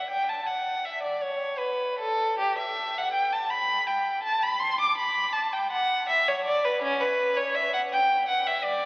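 A classical, baroque-style suite movement for unaccompanied violin, this short passage has a dance-like, flowing mood at 82 BPM in 3/4, played with a rubato feel. A single bowed violin carries the whole passage from 0.0 to 8.9 s, ranging from C#4 to D6. Its tone is rich and focused, colored by vibrato, and it sits up front in the sound. A cathedral reverb with a 5.7-second decay surrounds the instrument in a long, wet halo. The sound has the character of a very old 78 rpm record, with vinyl crackle running beneath the performance, and the passage is cut from a longer piece.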